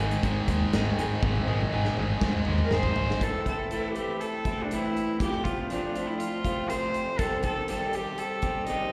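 Quiet-loud alternative rock at 121 BPM, angsty and dark, in which a slightly broken-up electric guitar arpeggiates through chorus and slapback echo while a bright, tight distorted riff and a growly overdriven picked bass open briefly over a big-room drum kit with a punchy kick and smooth, rolled-off top, whose fill runs from 1.2 seconds into the section change at 3.2 seconds, where the riff stops and a single bowed cello (entering at 2.6 seconds, sul tasto, soft-attacked and floating) carries the melody over G#, Am, F and Cm, all heard as a live gig through the venue's PA with recital hall reverb in this short excerpt.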